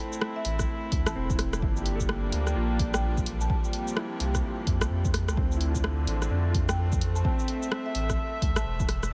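A warm chamber string section opens this wistful, ghostly future garage excerpt at 128 BPM with 16th-note swing, its reedy gut-string chords carrying vintage 12-bit grit and sidechain pumping as a deep house kit of hi-hat, rim click and shaker, a punchy layered electronic kick, a deep round sine sub bass with tube saturation, a bright woody upright piano with delay and a mellow soft-mallet marimba melody, heard from 0.4 to 3.6 s and again from 6.7 s, drift through Am, Gm7, C7sus4 and Dm7 over light reverb and vinyl crackle.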